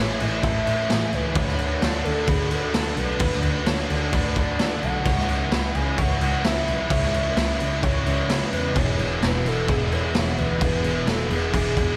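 A warbling, wave-folded synth lead sings a nostalgic melody over a lush, very quiet string machine, bright direct-recorded clean guitar arpeggios treated with ensemble chorus and tape echo, and two background riffs: a biting overdriven guitar with reverse reverb and a dark, thick fuzz guitar. A bowed double bass with expressive vibrato and portamento glides beneath, and a gritty, saturated garage drum kit with a punchy kick enters up front at 0.2 seconds. This dreamy, wistful shoegaze and dream pop passage moves at a straight 130 BPM in 4/4 through Amaj7, D6, C#m7 and E, cut from a longer piece and set in a small room.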